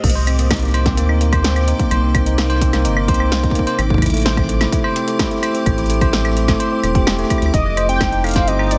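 A straight 4/4 pulse at 128 BPM drives this melancholic, eerie IDM excerpt in C dorian, where an electronic kick with a heavy, tape-warm thud from a large room sits beneath an analog drum machine's punchy snare, metallic hi-hat, claves and crash cymbal, while a rubbery, hollow square bass with tube saturation bounces up front. A bell-like tine electric piano plays clean arpeggios roughened by vintage 12-bit sampler grit and digital delay, over an icy, crystalline glass pad holding sustained chords in the background and a bubbling stepped-filter texture with random resonant steps, both carrying chorus and built-in reverb, as the harmony moves from Cm7 to Am7 to F7. At 7.5 seconds a velvety, full-bodied synth lead with vibrato, chorus and tape echo enters with a brief melody, all set in light digital ambience.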